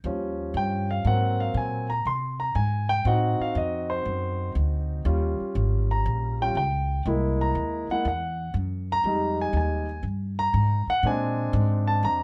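A lilting swung 4/4 carries this joyful big band swing fragment, where a polished, intimate concert grand piano takes the solo throughout its 12.2 seconds, its deep bass, long sustain and audible action noise sitting up front alongside a woody pizzicato upright bass with steel strings, all within a moderate club reverb over a progression from Eb7 through Ab7, Adim7, C7alt and Fm7 to Bb7.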